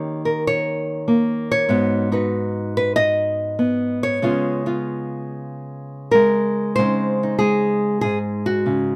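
A swung, rubato pulse around 95 BPM in 4/4 carries this playful, sophisticated solo jazz excerpt, where a small, up-front, fingerpicked nylon-string guitar, acoustic and warm, moves through D#7, G#m7 and C#7 before settling on Dbsus2 at 6.8 seconds, captured by close, detailed microphones with light reverb.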